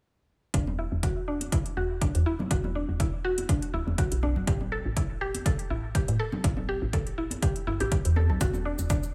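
A punchy, overdriven electronic kick drum and metallic hi-hats drive a smooth, hypnotic deep house groove at 122 BPM with a light swing, while a dark, woody FM bass pumps beneath a bright, mallet-like synth pluck playing arpeggios through chorus, phaser and dub echo, soft-handed ringing congas add color, and a grainy cabasa slips in at 8.4 seconds as the chords move between Esus2 and A5 in E minor within a small digital room.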